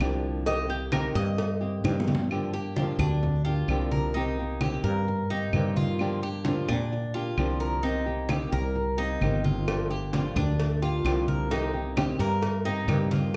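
A sultry, danceable excerpt of Cuban son and guajira at 130 BPM opens with fingerpicked flamenco guitar, a growly, up-front fretless electric bass, woody claves, bright, thin-skinned congas set back in the mix, and round, low-tuned cowbell and bongos that drop out at 2.3 seconds and return at 9.7 seconds, while a metallic, double-stringed Cuban tres enters at 0.5 seconds with picked arpeggios, takes the spotlight until a drum fill, and then carries on over a Cm7 to Gm7 sway, all heard from further back in a large, reverberant studio.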